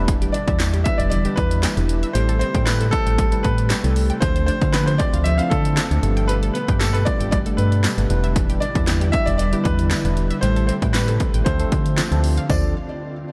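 A tine electric piano, a glassy FM pad and a round, dark FM bass open this bittersweet, confident dance-pop excerpt at 116 BPM in D dorian, all three pumping to the sidechain while a very quiet, detuned unison pluck runs arpeggios alongside. A punchy, overdriven analog drum machine sits up front with kick, snare, toms, hi-hat and handclaps, and a bright, polished concert grand enters at 0.3 s with a delayed melody. A jingly tambourine joins at 0.6 s over chords moving from Em7 through Am7 and Dm7 to Gadd9.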